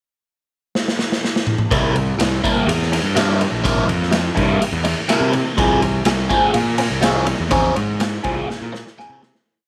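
Hypnotic and mysterious, this short psychedelic rock piece at 124 BPM opens with a saturated, gritty garage drum kit with a punchy kick and pumping stone-room sound, whose fill from 0.7 seconds leads into a groove from 1.7 seconds where a biting, double-tracked overdriven guitar with phaser plays short syncopated chords and a fuzz-drenched picked bass drives a syncopated riff, moving from C7(no3) to Fm/C before a final drum fill and fade-out close it at 9.5 seconds in light small-room reverb.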